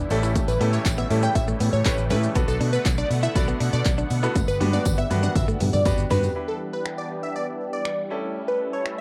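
Energetic and confident, this dance-pop excerpt drives a punchy analog drum machine with kick, handclaps, finger snaps, shaker, hi-hat and toms alongside a dark, foam-muted electric bass and a brilliant baby grand piano, while a detuned sawtooth supersaw swell holds soft sustained chords, with sidechain pumping on the bass, piano and swell; a twangy clean guitar riff with analog chorus and a jingly tambourine sit in the background until about 6.2 s, and a catchy plucky unison lead with vibrato and a moving notch carries the melody from 0.5 s, all within a home-cassette sound bathed in spring reverb.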